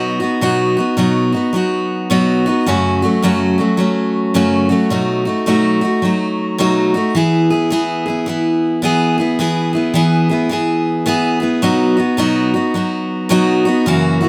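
A relaxed swing on the eighth notes gives this short country excerpt an easy, lilting gait in four. A single picked steel-string acoustic guitar carries everything, playing solo from start to finish and sitting up front with a bright, full-bodied dreadnought tone and the snap of fresh strings. The mood is down-home and nostalgic, moving through chords of B, F#m and B7 before settling onto E and then returning to B at 11.6 seconds. The playing falls into two sections, with the second beginning at 9.4 seconds. Close, detailed microphones and a light touch of reverb keep the sound intimate and clear.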